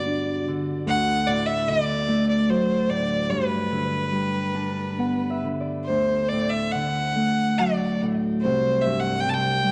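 A Celtic harp and a solo fiddle begin together in a tender, pastoral Celtic slow air in D mixolydian, moving freely in 3/4 at around 67-76 BPM. The bowed fiddle carries the melody up front with a rich, focused tone, light vibrato and a touch of tape echo, while the mellow, thumb-plucked harp rings alongside it through chords from Gmaj7 to D, G and C5, adding a fill from 4.1 to 5.9 seconds. A lush recital-hall reverb and dark production surround this brief excerpt from a longer piece.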